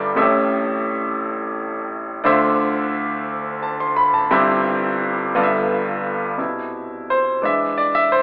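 Set in a slow 6/8 with a straight feel, this short gospel passage, cut from a longer piece, carries an uplifting, soulful mood. A bright concert grand piano plays alone throughout, reaching from deep bass notes up into a brilliant, polished upper register, with long sustain and the clatter of its action audible. Heard up close and intimate, it moves through rich gospel harmony, from A7 and Dm9 to C/G and a G13. At 6.4 seconds a new section opens on Cmaj7, turning to E7 at 7.4 seconds. A moderate large-studio reverb surrounds the performance, which has the narrow, boxy colour of an AM radio broadcast and a faint mains hum beneath it.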